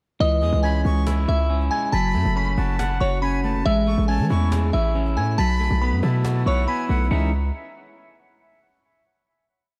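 A menacing, dark half-time trap piece at 139 BPM in C# minor opens at 0.2 s with a tinkling FM synth bell loop doubled in octaves, a twangy, slightly broken-up electric guitar cycling a rising and falling eighth-note arpeggio, a punchy, heavy sine 808 bass holding long sub notes with pitch slides up front, and a snappy cajon beat with fast hi-hat rolls in the background, joined at 0.4 s by a sparse, breathy jazz flute counter-melody with vibrato and chiff, all moving through C#madd9, F#m, Amaj7 and B7sus4 in a light reverb before settling on a final C#madd9 chord at 7.1 s.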